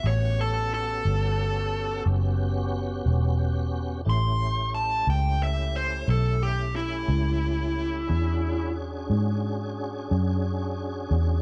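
An overdriven lead guitar carries this soulful, gritty slow blues, its dark, smooth, picked tone sitting up front as it plays a solo melody ranging from E4 to C6 until 8.7 seconds. The groove moves at 60 beats per minute in a straight 12/8 in A mixolydian, resting on an A13 chord before shifting to E13 at 8.1 seconds. Beneath it, a tonewheel organ holds full, lightly overdriven chords with audible key click, chorus vibrato and a slow rotary speaker adding movement to its warm body. A vintage foam-muted, fingered electric bass anchors the low end with a round, punchy, amped sound that stays prominent in the mix. The organ and bass continue to the end at 11.4 seconds, in a short cut from a longer piece with light reverb and a soft-topped, mellow high end.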